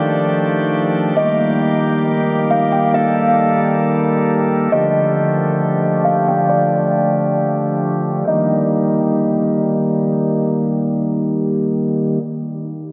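This blissful, floating hip hop excerpt opens with a pipe organ on its cornet stop holding sustained chords, a nasal solo voice with a baroque character and a touch of chiff, placed up front from 0.0 s to 12.2 s. At 1.2 s a kalimba enters with the melody in a high register, its woody, ringing thumb-plucked tone soft and dark, carried on an analog delay until 9.6 s. The piece moves in free time, the harmony drifting between rich extended chords and plain major ones. A filter sweep runs through the opening section until 8.3 s, where a second section begins. The dreamy mix is soaked in a huge ambient reverb with a long, lingering tail and rounded off by a low-pass filter.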